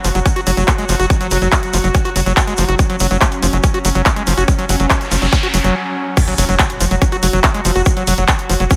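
The recording sits under a light reverb. This driving, hypnotic psychedelic trance runs at 142 BPM in a straight 4/4, resting on an F#5 chord. A layered electronic kick drum enters up front at 0.3 seconds over a big-room dance kit of crash cymbal, handclaps and hi-hat with studio reverb, and a grainy egg shaker adds a bright, band-limited acoustic texture. The tight sequencer bass holds F#1 with a saturated sawtooth and square-wave tone, ring modulation and a plucky filtered attack, while a screaming acid riff squelches aggressively through resonant filter sweeps, distortion, chorus, delay and sidechain pumping. In the background, an evolving, detuned wavetable pad sustains morphing, warbling chords with chorus, built-in reverb and its own sidechain pumping. A noise sweep builds from 5.0 seconds into a brief break, and an impact lands the drop at 6.2 seconds in this cut from a longer track.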